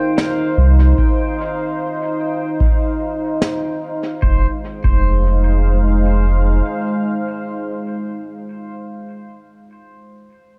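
A round, mellow sine sub bass sits up front in this short cut from a longer ambient dub piece, entering at 0.6 s and holding low notes with tube saturation until 6.6 s. Around it, a deep, moody pad built from detuned sawtooth unison voices and a sub octave sustains slow-attack chords with chorus and its own reverb, in F minor at 74 BPM, moving from an F5 chord to Fm7 at 4.2 s. A clean, twangy pedal steel guitar, played with fingerpicks and slide, traces faint high arpeggios far back in the mix through a low-pass filter and tape echo. An analog electronic kick gives a deep, tape-tinged pulse in straight 4/4, while a brushed acoustic snare with a smooth, rolled-off top throws dub echo in the opening seconds. The room sound is dry and the production dark, leaving a hazy, deep mood.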